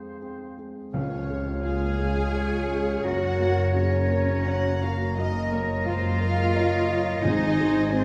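Set far back in a wet scoring-stage reverb, this moving, bittersweet cinematic film score drifts at 86 BPM in a rubato 3/4, in D-flat major, over chords moving from Fm through Db, Gb and Ebmadd9/Gb to Ab. A felt-muted upright piano with audible action noise sits under airy flutes, a clear clarinet and a smooth oboe from the start. At 0.9 s a floating sul tasto violin melody enters with dark, woody violas, mellow French horns, an up-front double bass and hard-mallet timpani, and cellos and a second, rich violin section join by 1.7 s.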